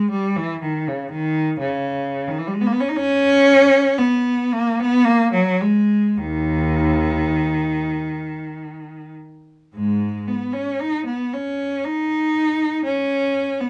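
Set in a slow, free-flowing 6/8 with rubato, the pulse drifts between roughly 29 and 44 BPM counted in dotted quarters, giving this classical fragment a hesitant, breathing quality. A single bowed cello plays entirely alone from 0.0 to 13.7 seconds, ranging from D#2 up to D#4. Its tone is rich and focused, shaded with vibrato, and the instrument sits up front while still carrying a slightly distant quality. Light reverb surrounds the performance with a modest sense of space. The mood is mournful and yearning, and the passage is cut from a longer piece.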